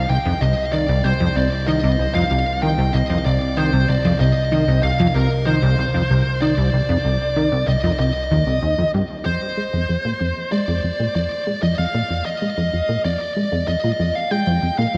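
A plucky analog bass drives this hypnotic, mysterious piece of ambient, sequencer-driven space music, its punchy, funky riff built from sawtooth, pulse and triangle tones with a touch of ring modulation and a fast, decaying filter pluck, sitting up front through analog chorus and delay. Above it, a dark, distorted high-gain electric lead guitar plays a picked melody, also up front and soaked in delay. An evolving, nasal analog drone holds a low C in the background under chorus until 9.2 seconds. The groove moves at 95 BPM in a straight 4/4 in F dorian, shifting from C minor to F minor seventh at 9.3 seconds, where a filter sweep moves across the synth bass through to the end of the cut. A wet plate reverb and an echo-heavy mix give the whole fragment a deep, cavernous sense of space.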